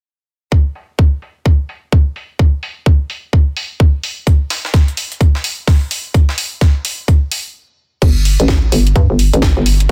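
Bouncy and swaggering, this swung bass house excerpt rides a tight, up-front electronic kick and a garage kit of cracking snare, crash and bright low-pass-filtered hats, joined at 4.3 seconds by a gritty, pitched-up breakbeat sampler kit with a high-tuned snare and pumping hats, before a brief stop at 7.5 seconds gives way to a hollow, knocking FM bass that punches in with sidechain pumping at 8.0 seconds, all in a dry, dense, heavily limited mix.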